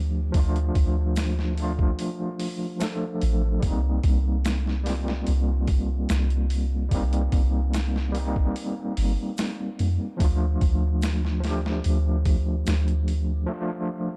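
Trip hop at 73 BPM in 4/4 with a straight feel, this short excerpt from a longer piece sits in C dorian with a dark, hypnotic mood and a warm, dark production in a digital ambience. An overdriven tine electric piano carries the accompaniment up front from the opening through 14.2 seconds, its barky, gritty tone pushed through a combo amp and colored by tremolo and tape echo as it moves from Dm to Cm7 at 3.6 seconds and back to Dm at 10.2 seconds. Beneath it, a soft 808-style bass is deep and round, a sine tone with a fast attack that decays, sitting prominently until it drops out at 13.5 seconds for a brief break. A boom bap sampler-style drum kit of kick, snare and hi-hat enters at 0.3 seconds, compressed, pitched down and overdriven, with a thumpy kick and a high-tuned snare. In the background, an egg shaker adds a ringing, acoustic touch from a small room, played with soft hands.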